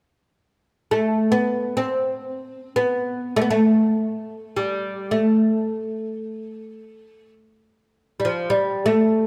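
Soulful and hypnotic, this brief fragment of Turkish music unfolds in free time, drawn from a longer piece. A solo oud carries the melody, entering at 0.9 seconds and playing through to 9.3 seconds within a fairly low range. Its fretless, double-strung voice sounds woody and plectrum-plucked, placed up front in the mix. The line moves in the makam nihavent mode. A moderate reverb, like that of a scoring stage, lends the instrument a sense of space around its close, intimate tone.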